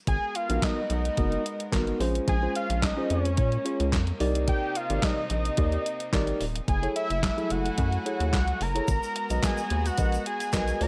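A digital ambience surrounds this danceable, funky early-eighties boogie funk, cut from a longer piece and moving in a straight 4/4 at 109 BPM, tuned to A4 = 436 Hz, through Abm9, Bbm9, Cm9 and Gbm9 chords. Up front, a crisp 8-bit drum machine with gated reverb drives a thumpy kick, snare, hi-hat and handclaps beside a rubbery, bouncy square-wave bass with a filter pluck, while a fat, nasal, detuned analog lead with vibrato carries the melody. A mellow tine electric piano enters at 0.5 s as accompaniment, a chamber string section with gut-string tone holds sustained bowed chords, and a grainy tube shaker joins in the background at 8.9 s.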